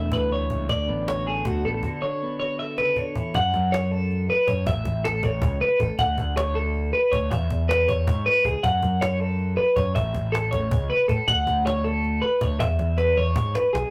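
Wistful and bright, this math rock and midwest emo excerpt in 7/8 sets a twangy twelve-string electric guitar's up-front arpeggios over a second, warm twelve-string guitar that accompanies only until 3.4 seconds, a punchy fuzz-overdriven picked bass, and a woody, close cajon with faint snares whose fills land at 2.8 and 12.8 seconds, all captured in a rough rehearsal-room sound with tube saturation and moderate reverb as the chords cycle from F#m through A, Dmaj7 and E.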